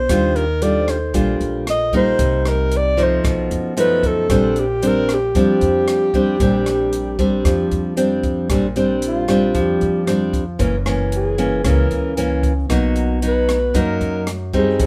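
Moderate studio reverb surrounds this relaxed, romantic bossa nova excerpt at 114 BPM in Bb major, where an up-front, fingerpicked nylon-string guitar and a woody, pizzicato upright bass support a dark, whispered alto saxophone with light vibrato that takes a solo from 8.5 seconds, over a compact cocktail drum kit of hi-hat, rim click and punchy kick, while a mellow tine electric piano sits in the background from 0.6 to 2.2 seconds.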